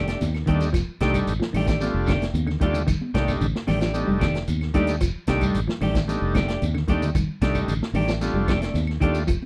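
Driving and funky, this short afrobeat passage grooves in a straight 4/4 over a single F13 chord. A dark, round fingered bass sits up front, with a foam-muted tone, while a vintage drum kit adds a punchy kick, a medium-tuned snare and hi-hat, its top end rolled off in a studio-room sound. A hollow-body semi-hollow guitar plays clean, picked arpeggios in the background, and a second clean electric guitar adds warm picked stabs. At 0.5 seconds a buzzy, overdriven combo organ joins with light vibrato as accompaniment. Around them, bright, high-tuned congas struck with hard hands stay very quiet, a grainy, mellow shekere sounds distant in a large room, and woody, saturated claves tick in the background, all within a dry, close 1970s-style studio recording with light reverb.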